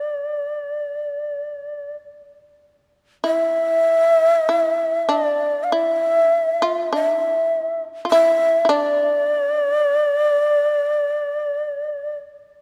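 A breathy, end-blown bamboo shakuhachi sits up front and carries the melody between D5 and F5, its tone warm and airy with vibrato, a crisp attack and a touch of chiff at the start of notes. Beneath it, a fretless shamisen plays a quieter second line between D4 and F4, its plucked strings bright, percussive and buzzing. This is Japanese traditional chamber music in D minor, moving slowly at around 45 to 54 BPM in a free, rubato 4/4 that feels still and solitary. Both instruments sound from the very start, with the shamisen stopping at 12.1 seconds and the shakuhachi at 12.2 seconds. A brief opening passage gives way to a second section at 3.2 seconds, and a moderate concert-hall reverb with a 2.6-second decay lends the pair a spacious, reflective air in this short cut from a longer piece.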